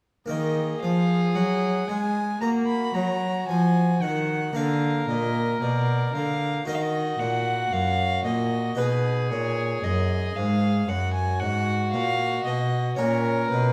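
A warm, gut-strung cello carries the bass beneath a rich violin melody with light vibrato, an airy-bowed, nasal second violin and a full French-style harpsichord, all four playing throughout this solemn, introspective baroque-style sonata movement in Eb minor, taken at a rubato 57 BPM in 4/4 and heard in a moderate recital-hall reverb.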